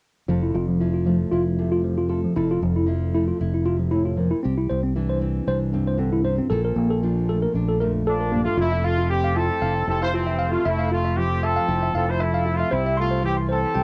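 Joyful and carefree, this swung highlife guitar-band excerpt sets a dark, full-bodied fingerpicked nylon-string guitar and a round, up-front fingered electric bass under clean tine electric piano arpeggios shimmering with medium tremolo and analog delay, joined from 8.1 s by a warm horn section carrying the melody with light vibrato and a roomy, delayed sheen, all captured as a cassette home recording with light reverb.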